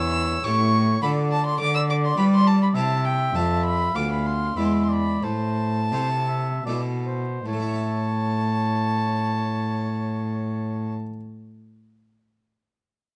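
A grave yet flowing baroque-style sonata movement in 3/4 at a rubato 74-105 BPM, this excerpt sets a warm oboe melody with light vibrato against an up-front violin second line with an airy, gut-string bow, a dark, reedy cello bass, and a brilliant, full-bodied Flemish harpsichord whose plucked continuo rings on alone until 11.2 seconds, with the music slowing between 2.5 and 7.5 seconds before a new section begins on an A chord, all captured by close, detailed microphones in light reverb.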